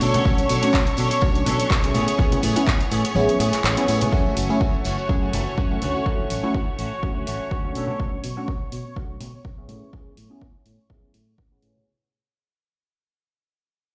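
An up-front, punchy electronic kick drives this sensual, funky filtered disco house clip, falling away from 3.2 to 4.1 seconds, alongside an analog drum machine's handclaps and hats, background tambourine and congas, a round, tube-saturated fingered bass, a detuned sawtooth polysynth comp with chorus, phaser and tape colour, a clean picked guitar riff that stops at 8.0 seconds, and clear bowed symphonic strings holding chords with light vibrato, most parts pumping under sidechain and low-pass filtering as a filter sweep and fade-out take over from 4.1 seconds in a stone-room reverb, as if played on a big sound system in a bare space.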